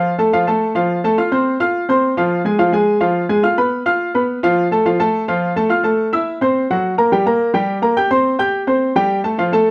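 Sophisticated and sunny, this brisk jazz excerpt at 212 BPM in straight 4/4 features a clear, woody upright piano playing solo up front from F3 to G6, its short sustain set in light reverb within a dark, warm production as the harmony moves through F, Fdim, Am, Gb, Gm and C5 over 9.7 seconds.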